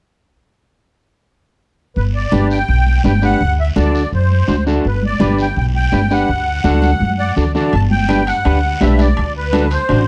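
Latin cumbia, joyful and festive, in which a reedy, shimmering musette accordion carries the melody over a woody pizzicato upright bass up front and a twangy, slightly broken-up electric guitar accompaniment, with raspy guiro and distant, high-tuned congas in the background, a drum fill at 6.8 seconds, and ringing, saturated metal-shell timbales joining at 7.7 seconds, set in a dark, warm production with light reverb.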